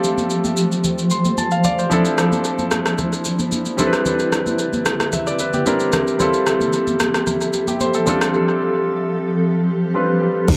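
A clear, present concert grand piano accompanies this late-night, deep amapiano excerpt at 112 BPM, playing a fill from 0.8 to 1.9 seconds over chords moving from G9sus4 through Dm9, Cmaj9 and Fmaj9, with a blurred, evolving granular cloud pad beneath it, a tape-tinged deep house drum kit with crash, deep kick, rim click and shaker, bright high-tuned congas heard until 8.2 seconds, and a punchy, tight log drum bass arriving only at 10.5 seconds, all set in an echo-heavy mix with a moderate spring reverb.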